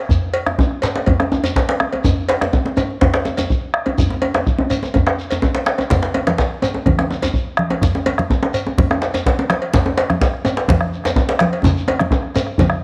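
A festive, powerful West African drum ensemble excerpt at 125 BPM in a straight 4/4 opens on a deep, dark bombo played close and dry up front, together with a djembe and a grainy, mellow shekere, with a metallic cowbell and then a second djembe joining almost at once. One djembe sits forward with a hard-handed, vintage, band-limited tone, while the other stays in the background in a small-room space. Ringing, medium-tuned congas struck with hard hands enter at 5.9 s, and a drum fill from 11.6 s carries the passage out in a moderate echo-chamber reverb.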